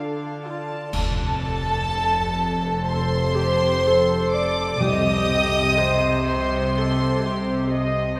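Rubato at 62 BPM in 4/4, this cinematic film-score passage, cut from a longer piece, carries a longing, bittersweet mood as a warm violin second line, a distant, floating viola section and a close, pure cello bass open together, all bowed sul tasto over a Dm chord. At 0.9 s a dark, intimate violin melody enters up front with light vibrato as the harmony moves to F, joined by a rich double bass section and a brief accent from dark cymbals and concert bass drum. Very quiet timpani with soft mallets and a round tone arrive at 4.8 s on a shift to Cm, the whole orchestra bathed in a wet cathedral reverb.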